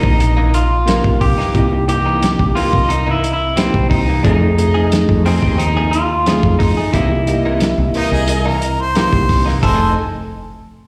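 A laid-back, rollicking straight-eighth soul blues opens with a slightly broken-up, lo-fi guitar melody through a small old amp and a round, hollow-toned fretless bass with analog chorus sitting up front, joined by a tine electric piano with medium tremolo, all over a muffled, dry soul drum kit with dark cymbals. Behind them, a lush, bowed symphonic string section holds dark sustained chords while a clean, direct-recorded guitar adds compressed stabs with slapback echo over the C7#9 and F7#9 changes. At 8.0 s a harmonica enters as a soft-attacked second line with scooped notes and light vibrato, all heard as a live gig through the venue's PA in recital hall reverb.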